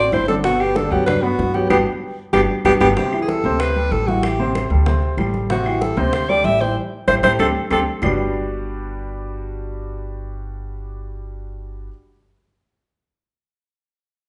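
Sophisticated and sunny, this Afro-Cuban jazz fragment in straight 4/4 opens with a clear, close-miked alto saxophone carrying the melody with vibrato, while a dark, breathy tenor saxophone adds a whispered second line in the background until 2.9 seconds. A woody upright piano with long sustain and a thumpy pizzicato upright bass sit up front through 11.9 seconds, ahead of ringing congas, very quiet high-tuned bongos and vintage-sounding claves that stop at 8.1 seconds. The band hits accents with drum fills before the chords move on, all set in a large, wet studio reverb that gives the feel of a group playing live in one room.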